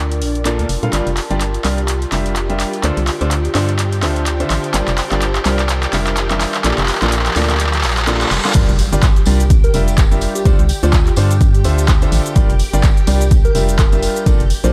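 This piano house excerpt opens on shimmering, sawtooth string-machine chords with vintage sampler grit, sitting in the background over a hollow, organ-like FM bass with tube saturation and a mellow, detuned tape-like pad that warbles through chorus, phaser and its own reverb. At 126 BPM in 4/4 with a swung sixteenth feel, the G dorian progression moves between Bbmaj7, Gm7 and Dm7, giving a soulful, energetic mood. From 0.5 seconds a brilliant grand piano carries the riff with tape echo, while a punchy analog drum machine adds cabasa, handclaps, hi-hat and crash cymbal over a drum fill, a filter sweep on the strings and a very quiet riser and reverse cymbal. A close, dry tambourine joins in the background at 8.5 seconds, and the drop arrives at 8.6 seconds with a very quiet impact, as a tape-warm electronic kick takes the front and the pad stops. At 9.6 seconds a round, gentle, keys-like FM lead enters softly with chorus, tremolo and echo. 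The strings, bass, pad and piano all carry sidechain pumping, and the production is dark with light reverb.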